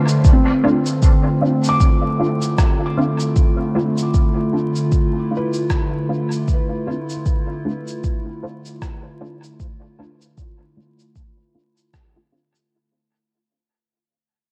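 Deep and meditative, this ambient dub fragment rests on a single Dm7 chord with a swung sixteenth feel, as an up-front, warbling, detuned tape-like pad with chorus, phaser and vintage sampler grit holds sustained chords, a soft felt-muted upright piano with audible action noise plays tape-echoed arpeggios until 7.1 s, a filtered sawtooth chord stab with phaser and dub echo punctuates under a filter sweep, a muffled electronic cabasa and rim click trail dub echo, and a deep, up-front electronic kick anchors the dark, vinyl-crackled mix as the passage fades out.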